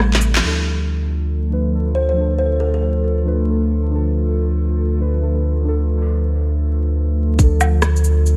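A thin veil of vinyl crackle and light digital reverb surrounds this ghostly, nocturnal future garage fragment, cut from a longer piece and moving at 138 BPM in 4/4 with a 64% swing on the 16th notes. A round, deep dub sub bass sits up front, and, with the muted felt-like synth keys and the warbly tape-like pad, it pumps under sidechain compression throughout. The keys are soft and dark, with a faint noise layer and dub echo, while the detuned, nostalgic pad drifts through chorus and phaser over a D minor chord. A layered kit of electronic rim click, handclaps, cabasa, shaker and woodblock, dulled by low-pass filtering, plays a short fill and accent before dropping out at 0.4 seconds. A woody, boxy kalimba phrase, thumb-plucked with delay, appears briefly at 1.9 seconds. The percussion returns at 7.4 seconds alongside a single tight electronic kick.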